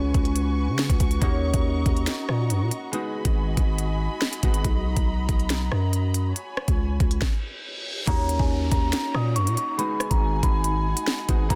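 A dense, heavily limited mix with light small-room reverb frames this cold, menacing drill hip hop cut in Eb minor at 140 BPM with a half-time feel, where a growling, buzzy 808-style bass and up-front drill kit of knocking kick, sharp snare, crisp hats and rim clicks drive beneath veiled con sordino strings and a filtered, fingerpicked concert harp, pausing for a stop at 7.2 seconds as an electronic reverse cymbal and downlifter sweep in before a delicate, bell-like celesta melody enters at 8.1 seconds over Ebm7 and Abm7 chords.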